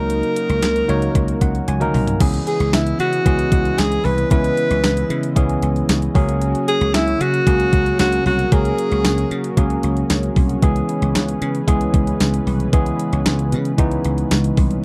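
A clear alto saxophone with light vibrato and slapback echo carries the melody up front until 9.6 seconds in this urgent, nostalgic slice of 1980s-style pop, over a bell-like tine electric piano that plays a fill just before 2.2 seconds, a soft, detuned analog pad with subtle chorus in the background, a punchy, foam-muted thumbed slap bass, and a thumpy, overdriven 12-bit drum machine with a fat snare and tambourine, while a woody, hard-mallet marimba adds a second line behind them from 2.5 seconds, all in a dry, close studio sound with light reverb.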